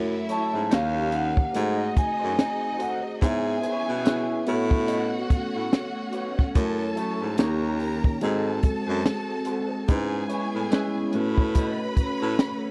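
Lush 1970s-style soul in C# minor, this bittersweet, smooth excerpt moves at a relaxed 72 BPM in 4/4 with a gentle sixteenth-note swing, cycling twice through a progression that opens on F#m7 and settles on A69. A clear baritone saxophone carries the bass line up front, its scooped notes and light vibrato giving the low end a jazzy, singing quality, while a compact cocktail drum kit with a punchy kick, high-tuned snare and hi-hat sits dark and rolled-off at the top. A worn, slightly out-of-tune tine electric piano, lightly overdriven through its built-in speakers, supplies the accompaniment, and an electric guitar at the edge of break-up plays a dark, fingered riff through a wah. A vibraphone with soft mallets and the motor off states a metallic, ringing melody from 0.3 to 4.9 seconds. Behind them, a studio string section with vibrato and portamento adds an expressive second line, and a very quiet string machine holds silky, slow-attack chords with ensemble chorus. 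The recording is dry and close, in the manner of a 1970s studio.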